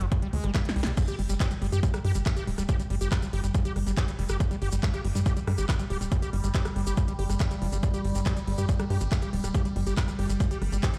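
A squelchy, resonant acid line screams through this short cut from a driving, psychedelic trance piece at 140 BPM in straight 4/4. The acid riff is distorted and bright, with chorus, tape echo and sidechain pumping. It sits over a tight, dark sequencer bass with a punchy sawtooth pluck, placed up front. A layered electronic kick is re-recorded in a small room and also sits up front, alongside a techno kit of punchy snare, smooth hi-hats, handclaps, rim clicks and crash cymbal, which plays a drum fill from 0.5 seconds. From 1.6 seconds an evolving wavetable pad holds sustained chords, its sine tone morphing through a phaser and built-in reverb while pumping with the sidechain. Grainy, close maracas add a mellow acoustic touch, and the whole mix rings out as if played on a big sound system in a bare room, with a large studio reverb.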